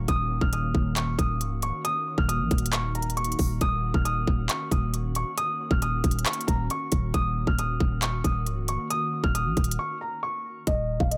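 This menacing, hard-hitting trap cut opens on a dark grand piano melody, its mellow, intimate tone carrying audible action noise and a vintage smoothness, filtered and trailed by digital delay high in the register. Beneath it a glassy FM pad holds sustained chords on Ebm7, its slow attack and long release softened by ensemble chorus and its own ethereal reverb. A growling, buzzy 808-style bass with a fast attack and decaying tail sits up front, and from 0.1 seconds an electronic trap kit drives a half-time feel at 136 BPM in Eb minor, with a hard-clipped kick, crisp hi-hats and handclaps. The overall sound is dry and close, giving the piano, bass and drums a punchy immediacy. A break arrives at 9.8 seconds, the pad drops out at 10.6 seconds, and the piano, bass and drums carry on to the cut at 11.2 seconds.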